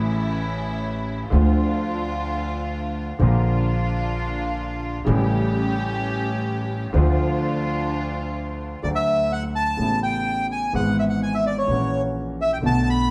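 The reedy, up-front bandoneon takes the melody at 8.8 seconds, singing high over an elegant, nostalgic tango in D harmonic minor at 127 BPM with a rubato feel, in a brief cut from a longer piece. A clear, smooth concert grand piano with deep bass carries the accompaniment throughout, joined by the woody, thumpy pizzicato of an upright bass, while a soft-attack bowed string section plays floating sul tasto stabs until 8.7 seconds. The band plays live together in one room, bathed in a stone-room reverb, as the harmony moves from Dm, Bb and A7 toward D, Aadd9, E/G# and F#7/A#.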